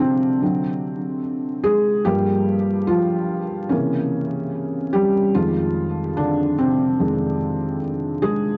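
A slow 73 BPM pulse in 4/4 carries a loose swing on the sixteenths, giving this short hip hop fragment from a longer piece a lazy, unhurried sway. A felt-muted upright piano plays alone from 0.0 to 8.6 seconds, sitting up front with a dark, intimate, vintage tone that ranges from F2 to Ab4. Its chords move from Ab7#11/C through Gm7 and C7b9 to Fm7, settling the mood into something melancholic and hazy. Tape echo trails behind the piano, and a moderate studio reverb lends a modest sense of room. The sound is otherwise dry and gritty, with vinyl crackle running underneath for a worn, lo-fi character.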